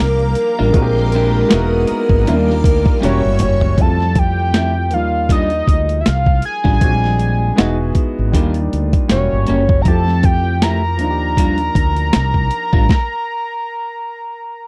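Soulful and relaxed, this neo-soul R&B excerpt moves at an unhurried 79 BPM in 4/4, with a gentle swing on the sixteenths and lush jazz-tinged chords such as Ebmaj9, Bb13 and Edim7. A fat, detuned sawtooth lead with a sub octave, vibrato and slapback echo carries the melody up front, while a warm concert grand piano with deep bass supplies natural accompaniment. A shimmering vintage string machine of violins, thickened by ensemble chorus, holds slow-attack chords only through the opening 3.8 seconds, and a dark, round fretless bass, also treated with chorus, anchors the low end. A gritty, compressed sampler-style drum kit with a thumpy kick and medium-tuned snare enters at 0.4 seconds and plays a fill just before the second section, joined by a picked electric guitar through a small old amp, slightly broken-up, adding a second line. At 12.9 seconds the band stops, the drums falling silent at 13.1 seconds, and the lead melody rings on to the end, heard in a dry, close, 1970s-style studio sound.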